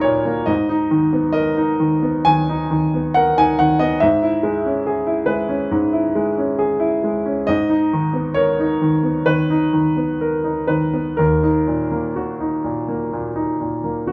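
Set in 4/4, the rhythm moves with a rubato feel, pushing and yielding freely. This wistful, reflective piece of neoclassical minimalist piano is a brief section cut from a longer work, carried entirely by a solo grand piano from 0.0 to 14.1 seconds. The piano sounds clear and smooth, with a vintage character, short sustain and an up-front presence. Its harmony moves through G#madd9, E6/G#, back to G#madd9 and settles on D#m at 11.2 seconds. Light reverb gives the sound the feel of a single room captured live.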